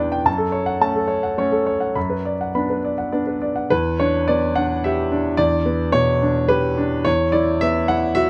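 Melancholic and reflective, this short neoclassical minimalist piano excerpt drifts in a rubato 3/4 around 108 BPM, as a solo concert grand with deep bass, a smooth vintage tone and an up-front, closely miked presence spans E2 to B5 under light reverb, moving from F#m through Bm/F# to G/E before settling on Esus2 at 7.1 seconds.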